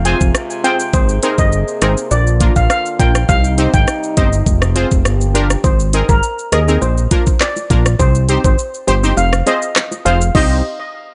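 A bouncy, sultry dancehall excerpt in C minor at 102 BPM opens on punchy, chorused synth brass stabs, a fat, detuned analog bass up front and a mellow, distant French horn section pumping under sidechain until 5.6 seconds, as a shimmering steel pan lead with delay rides over an overdriven island pop kit of knocking kick, crisp hats, handclaps, rim clicks, shaker and crash, while round, low-tuned bongos enter very quietly at 5.6 seconds and the kick drops out between 9.2 and 10.3 seconds in a dry mix.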